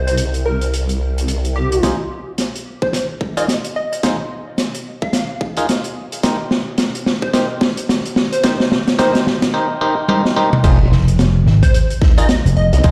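Heard through a big sound system in a bare room, this gritty, swaggering glitch hop cut sits in a large studio reverb, with a twangy clav playing stabs through sidechain pumping, a low-pass filter sweep and tape echo, while a catchy square-wave unison lead carries the melody with phaser and echo over a dark open jazz kit with a high-tuned snare. A saturated, chorused formant-sweep wobble bass opens the piece, then drops out at 1.8 seconds as an overdriven electronic kick arrives and a long build-up unfolds with drum fills and a filter sweep on the lead. At the drop at 10.6 seconds the wobble bass returns, joined shortly after by a round, punchy vintage slap bass up front.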